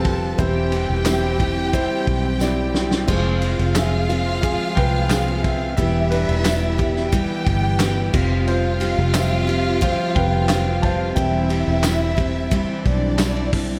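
An echo-heavy mix with light reverb and a small-room feel frames this hopeful, piano-driven pop excerpt, in which a dark, woody upright piano with dub echo takes a solo from 3.1 seconds over chords moving from C/E through Fm, Em and Fsus2. A lush, bowed violin section with vibrato and portamento carries a second line, while a picked steel-string acoustic guitar sits in the background with a dub-echoed riff and audible finger squeak, and a soft, flute-like tonewheel organ holds very quiet sustained chords. Underneath, a round, foam-muted electric bass sits up front beside a loose, gritty indie drum kit with a fat snare, punchy kick, dark cymbals and handclaps, which plays a fill at 2.4 seconds, and a jingly tambourine with dub echo joins at 1.1 seconds.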